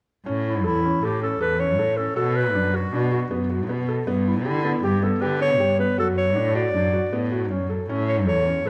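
Contemporary instrumental music in a pensive, hypnotic mood, moving at 157 BPM in an unusual 5/4 metre with a straight feel, cut from a longer piece. A felt-muted upright piano plays soft, mellow arpeggios in the middle register, its thin felt lending an intimate, natural tone, while a single bowed cello carries the bass line with rich, focused vibrato. Both begin at 0.3 seconds, and a clarinet enters at 0.5 seconds with the melody, played up front in a warm, classical solo style. The harmony moves through A, Bm, G and D/F# before returning to A at 7.9 seconds, a progression that adds to the passage's trance-like pull. A moderate scoring-stage reverb with a 2.2-second decay surrounds the trio, and the tuning sits slightly high at A4 = 441 Hz.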